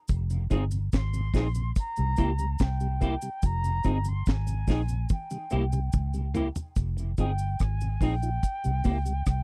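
Hypnotic and meditative, this roots reggae cut moves at 72 BPM in F minor, circling between Fm7 and C7 over a dry, close 1970s-style studio sound. A deep kit with a high-tuned snare and tight kick sits up front beside a dark, round, foam-muted fingered bass, while a clean picked electric guitar with ensemble chorus and a soft tonewheel organ on slow rotary speaker, its key click audible, fill the middle, and a faint compressed cabasa adds texture. An airy, distant concert flute carries the melody with vibrato from 0.9 seconds, and a drum fill from 5.1 to 6.8 seconds leads into a new section.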